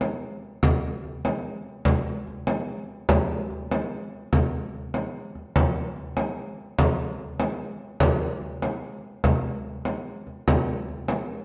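Medieval percussion in 6/8 with a straight feel, moving at 98 BPM counted in dotted quarters, this short excerpt cut from a longer piece has a driving, mysterious mood. A lone frame drum carries the whole recording, sounding from 0.0 to 11.3 seconds. Its tone is deep and large, an acoustic drum given a compressed, saturated edge and placed up front in the mix. The drum sits in a recital hall with a reverb tail of about 1.5 seconds, lending a resonant sense of space around each stroke. A single section runs from 0.6 to 10.5 seconds, keeping the focus on the drum's deep character.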